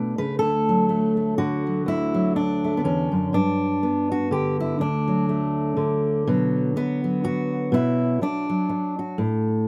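A full-bodied, up-front steel-string acoustic guitar rings out with light reverb in an open outdoor setting, carrying a pastoral, peaceful folk mood at 123 BPM in a gently swung 3/4. Fingerpicked alone across its whole span from D2 to B4, the guitar moves from D through Gmaj7 and back to D, then turns to Bm at 6.3 seconds as a second section begins. This short excerpt is cut from a longer piece.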